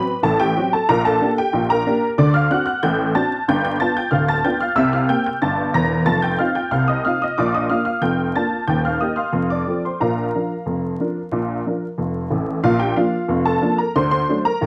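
A dry, close 1970s-style studio sound with light reverb and a layer of vinyl crackle frames this short cut from a longer ragtime piano piece in Bb major, moving at a jaunty 92 BPM in a straight 2/4. A detuned, jangly honky-tonk upright piano plays solo and sits up front, spanning D1 to Bb6 as it steps through a cheerful chain of dominant chords (D7, G7, C7, F7) before settling on Bb. A new section begins at 12.6 seconds, turning back toward D7 just before the excerpt ends at 14.7 seconds.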